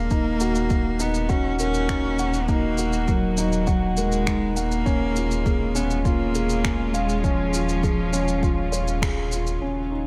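Moving and intimate, this short piano and strings electronica excerpt sets a rich, close cello melody with delay over a felt-muted upright piano riff, also delayed, while a distant, reedy string section holds sustained chords and a round sub bass pumps beneath an electronic kick and tape-warm shaker and finger snaps, all drawn together in light small-room reverb before a band accent at 9.0 seconds.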